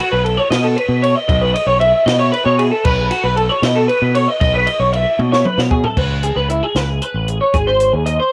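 Math rock and midwest emo in a playful, intricate 6/8, this cut from a longer piece puts a twangy, slightly broken-up electric guitar through a small old amp up front with picked arpeggios coloured by ensemble chorus, tape echo and cassette grit, alongside a growling fingered electric bass that is overdriven and direct, while a compact cocktail drum kit with a cassette-tinged, punchy kick, high-tuned snare and dark cymbals plays a fill from 5.2 to 6.0 seconds that leads into a new section at 6.0 seconds, captured as a home cassette recording with light reverb.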